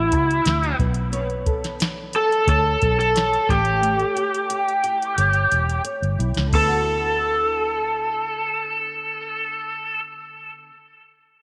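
Sunny and hazy, this indie bedroom-pop fragment sets a bright, overdriven slide guitar up front carrying the melody through lush chorus and tape echo, over a fingerpicked flamenco guitar shimmering with analog chorus and vibrato, a dark, round, foam-muted electric bass, and a soft vintage rhythm box with a deep kick, crisp snare and metallic hats that plays a fill from 3.8 seconds before dropping out at 6.7 seconds, all bathed in a moderate echo-chamber reverb as the D6/9, Bm9 and A7 harmony resolves back home.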